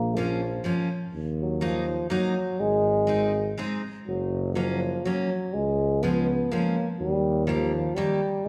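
A mellow euphonium and a mellow tuba start together at the outset of this short alpine folk dance clip, cut from a longer piece, with a picked steel-string acoustic guitar joining at 0.2 seconds. The music moves in a festive, jolly 3/4 at 123 BPM with a straight feel, played in the manner of an alpine dance band. The euphonium carries the melody up front with a soft attack and a classical poise, while the tuba holds down the bass with a smooth top and light vibrato. The dreadnought guitar, also up front, supplies full-bodied picked accompaniment through a chord sequence that runs from Bbm through Ebm, Ab, Gb and Db7 before settling on Eb. The whole passage sits in a recital hall, where a 1.6-second reverb lends a spacious, churchlike bloom until the clip ends at 8.5 seconds.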